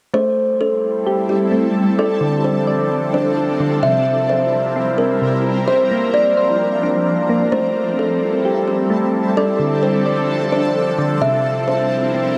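A half-time 4/4 pulse at 130 BPM carries this hazy, ethereal hip hop excerpt in D minor: a woody, ringing kalimba plays the melody through a low-pass filter and delay, soft electric-piano-like synth keys add mellow, detuned arpeggios with chorus, and a bright, shimmering ambient pad enters at 0.9 seconds with slow-attack sustained chords coloured by phaser and octave-up shimmer, the whole sitting in a moderate shimmer reverb over a cycle of Am7, Dm7, C7 and Bbadd9.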